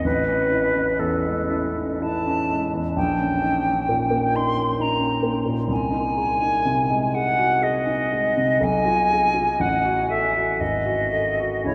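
A pure-toned silver flute with vibrato and a crisp attack sings a yearning, elegiac melody over polished grand piano accompaniment from the very start of this romantic classical fragment, drifting in a rubato 3/4 at 54-67 BPM from an opening Amaj7 through shifting, searching harmonies, all bathed in the long, echoing wash of a vast cathedral.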